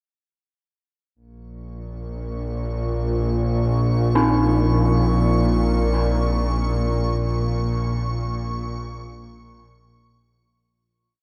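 Dark ambient drone in free time, desolate and unsettling, opening at 1.6 seconds with an up-front, string-like bowed drone between Bb1 and Bb2, tense and sawtooth-edged with vibrato and a noise layer, over an Eb5/Bb harmony. An icy, crystalline glass pad holds a high Db6 from 2.3 seconds, airy and detuned beneath chorus and shimmer reverb. From 4.2 seconds an eerie, inharmonic FM bell plays arpeggios between C4 and Eb4 in two slow loops of unequal length drifting against each other, all of it steeped in a cathedral reverb and the warbling pitch drift of worn cassette tape.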